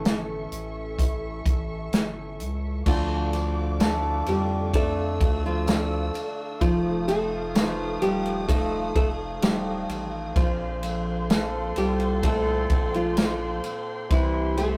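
Emotional and longing, this slow pop ballad at 64 BPM in D minor, tuned to A4 = 436 Hz, opens on an A chord with a concert grand piano showing audible action noise and long sustain, dark bowed strings with vibrato, a very quiet picked jumbo steel-string guitar playing arpeggios with finger squeak, a thick saturated sine sub bass and an up-front natural country drum kit with a punchy kick. At 2.9 s a woody, fingerpicked nylon-string guitar with old strings takes the melody over Dm, F7, Bbsus2 and C. A background line from a mellow French horn section and a distant, jingly tambourine join it, all caught in a rough rehearsal-room recording with light reverb and tube saturation.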